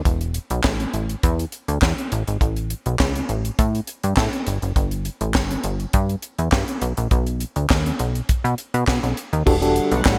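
Early-eighties boogie funk at 102 BPM in E dorian, danceable and funky, driven from 0.1 seconds by a punchy, plucky sawtooth-and-square analog bass and a tight, dry funk drum kit with a high-tuned snare, handclaps and gated reverb, both up front through Esus4, A and B chords, before a dark FM electric piano with tremolo and a noise layer enters at 9.5 seconds and a shimmering, detuned chorused pulse-width pad joins on Em11 at 9.6 seconds, set in a bright 1980s-style digital production with small room ambience and cut from a longer piece.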